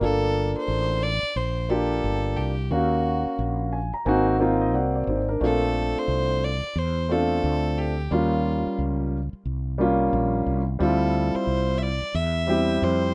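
Nocturnal and smoky, this jazz-hop fragment, cut from a longer hip hop piece, settles into a relaxed swung 16th-note groove in 4/4. A single bowed fiddle carries the melody from start to finish, its rich, earthy tone carrying a light vibrato and a smooth top end. Beneath it, a dark baby grand piano sits up front with mellow, long-sustaining chords, and it steps forward with a fill between 3.4 and 5.4 seconds. A fretless electric bass anchors the low end with a round, direct sound that is also placed up front. The harmony drifts through lush extended chords, opening on Gm9 and passing through Bbmaj9 and Eb9 before landing on Dm11. A small room reverb and a rough home-demo mix give the recording an intimate, unpolished character.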